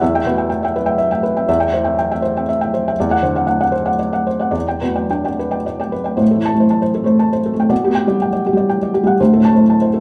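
Intimate and reflective, this brief cut from a longer neoclassical minimalist piano piece moves in a rubato 3/4 in E minor, drifting between 104 and 126 BPM. A felt-muted upright piano plays alone from 0.0 to 10.0 s across a range from D2 to A5, soft and mellow with short sustain and audible action noise, sitting up front in a wet stone room whose reverb lasts about 1.0 s. Its harmony circles Em, C/E, D7/E and Em7 before turning at 6.2 s toward Am and G/B, with the performance captured live in a single room.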